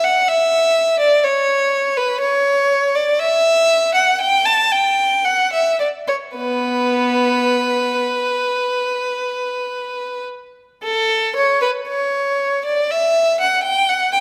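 A moderate scoring-stage reverb, with a decay of about 1.8 seconds, surrounds a single violin placed up front in this short cut from a longer classical piece. It is a baroque-style suite movement for unaccompanied violin in 4/4, played with a rubato feel that gives the line a radiant, serene character. The bowed tone is rich and smooth, coloured by vibrato and kept even throughout, spanning B3 to A5. The violin plays alone from 0.0 to 14.2 seconds, and the opening material returns at 10.8 seconds before the cut ends.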